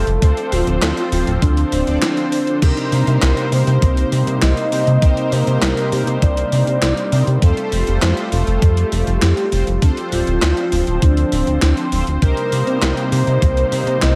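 Driving and nocturnal, this synthwave excerpt in C dorian moves at 100 BPM in a straight 4/4 over Dm7, Cm7 and Fadd9, with a thumpy, up-front electronic kick and a gated 80s drum machine of handclaps, hi-hat, crash and gated-reverb snare under a saturated, glossy chorused synth bass, a smooth, warbling analog pad pumping with sidechain, brassy synth stabs treated with phaser and tape echo, and a soft octave-layered lead melody with tremolo, cassette-tape coloring and diffuse delay, all set in a dreamy plate-reverb wash.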